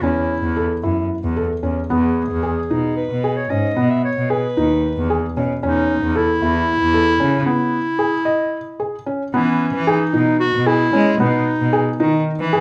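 Light reverb surrounds this chamber recording, with clarinet, piano and cello each sitting up front. Cut from a longer contemporary instrumental piece in E major, it moves in a playful, restless 7/8 at 226 eighth-note beats per minute with a straight feel. A felt-muted upright piano supplies soft, mellow arpeggios, its action noise audible in the sound. A bowed cello carries the bass with a rich, gut-string, period-style tone, light vibrato and a reedy edge. Above them a clear, present, classical-style clarinet plays the solo melody, stopping at 12.2 seconds just before the others finish. The harmony sways between A over E and Emaj7, and a break from 7.5 to 9.3 seconds leads into a return of the opening material.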